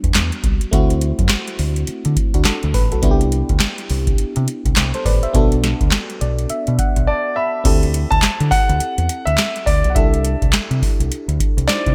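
New jack swing R&B at 104 BPM with a swung sixteenth-note feel and a punchy, confident mood, built on an up-front, booming analog drum machine with a deep kick, crisp snare, handclaps, metallic hats and crash, all bathed in gated reverb, over a dark, round fingered dub bass. A glassy, bell-like FM electric piano with a warbling chorus comps through chords moving from Em7 and D7 to Cmaj7 and Bm7, playing a fill from 5.9 s, with a brief silent gap at 7.1 s. An intimate concert grand piano melody with audible action noise and long sustain enters at 7.1 s as the harmony shifts to D9sus4 and C6, all wrapped in bright 1980s-style digital production with light reverb in this short excerpt.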